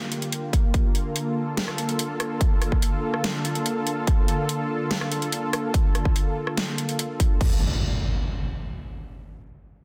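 A dense, heavily limited modern master with light reverb and a digital ambience frames this short cut from a longer heavy wobble dubstep piece in G minor, tuned to A4 = 438 Hz. At 144 BPM in 4/4 with a half-time feel, the mood is heavy and menacing. A lush, thick unison pad of detuned sawtooth voices with a slow attack and long release sustains chords from the opening, moving from Gm7 to Bbmaj7, treated with chorus and sidechain pumping. An electronic kit of crash cymbal, metallic hi-hat, rim click and a huge, tape-warm snare sits up front, joined at 0.5 seconds by a punchy, overdriven kick that was re-recorded in a small room. At 7.4 seconds the harmony returns to Gm7 as the pad and drums give way to an electronic impact that carries on until 9.1 seconds.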